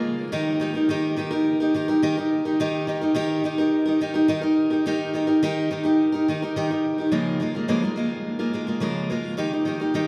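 This pop excerpt features a single picked steel-string acoustic guitar playing alone at 106 BPM in straight 4/4, with a carefree yet heartfelt mood. The guitar sits up front, its warm picked tone carrying audible finger squeaks and a slapback echo that gives each note a quick shadow. It ranges from Db3 up to Bb4, moving from an Eb chord into a Db6 harmony at 7.1 seconds, where a new passage begins, before settling back on Eb at 9.4 seconds. Around it, a long cathedral reverb makes the playing sound as though it hangs in a vast, echoing space, lending an auditorium-like openness. The piece lasts just over ten seconds and feels cut from a longer performance.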